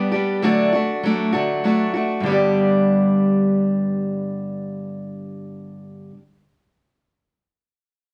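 Jangly and nostalgic, this brief rock fragment in a straight 6/8 features a lone picked steel-string acoustic guitar, dark and up front with audible finger squeak, ringing through a moderate large-studio reverb as it moves from D to G around 2.2 seconds.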